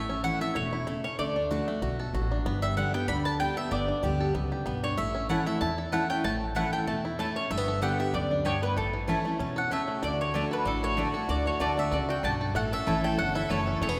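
Driving and virtuosic, this swung bluegrass excerpt sets an up-front, bright mandolin melody over picked dreadnought guitar with finger squeak, twangy fingerpicked banjo arpeggios and a growly, thumpy upright bass, while a second, woody mandolin adds stabs from 5.3 seconds and a nasal, clear fiddle enters with a second line at 10.0 seconds, the band ringing in a wet concert-hall reverb.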